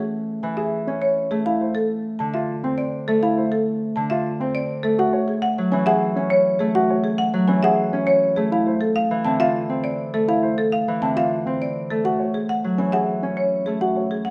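A woody, medium-hard-mallet marimba melody, ringing, fingerpicked Celtic harp accompaniment and dark, short-sustained grand piano arpeggios open this hypnotic, propulsive minimalist classical passage in 3/4, with dry, close-miked xylophone arpeggios on soft rubber mallets joining at 1.5 s as the harmony moves among Amaj7, F and Fmaj7 in a moderate recital hall reverb.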